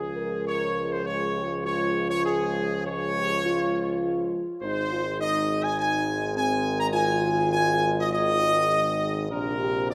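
Regal and majestic, this classical ceremonial fanfare in Ab major moves at a straight 102 BPM in 4/4, a short passage cut from a longer piece. A warm trumpet section carries the melody up front with light vibrato and a smooth top, while a dark, tight French horn section entering at 0.2 seconds and a distant, roomy trombone section hold sustained chords in the background. Beneath them a clear solo tuba anchors the bass, all set in the moderate reverb of a scoring stage.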